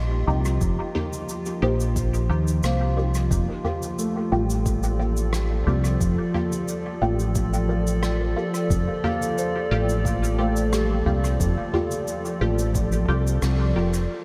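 A dreamy, reverb-soaked mix with a huge ambient space frames this spacious, hazy ambient dub excerpt at 89 BPM, where a warbling, nostalgic tape-like pad holds sustained chords up front over a round, punchy fingered electric bass with tube saturation, while a felt-muted upright piano adds soft, intimate arpeggios through delay in the background, a nasal, detuned filtered dub chord stab with phaser, sampler grit and dub echo enters at 0.3 seconds alongside a soft-mallet drum kit of cabasa, rim click and low-passed toms, a deep electronic kick joins at 0.6 seconds, and the harmony moves from F9sus4 to Gm7/F before a band accent at 13.4 seconds.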